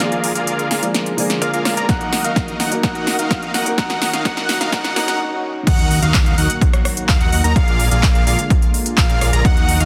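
An up-front, punchy electronic kick drum, overdriven and layered, drives this powerful, emotional festival progressive house excerpt at 127 BPM in Eb minor, arriving at 1.9 s. Around it, a big-room dance kit adds crisp hi-hats, handclaps, rim clicks, snare and crash, all overdriven, and it plays a drum fill through the build-up. A huge, detuned supersaw riff is compressed and low-pass filtered, with tape echo. A bold, bright, wave-folded unison lead plays high arpeggios through lush chorus, and a slow-attack pad holds sustained chords in the background; the supersaw, lead and pad all pump with the sidechain. A clear, boxy baby grand piano accompanies the build-up and then stops as a brief break gives way to the drop. There a fat analog bass with a moving notch enters at 5.7 s, and a very quiet riser and impact mark the transition over chords of Ebm, Ebm9 and Bb7, all set in light reverb and a dense, heavily limited modern master.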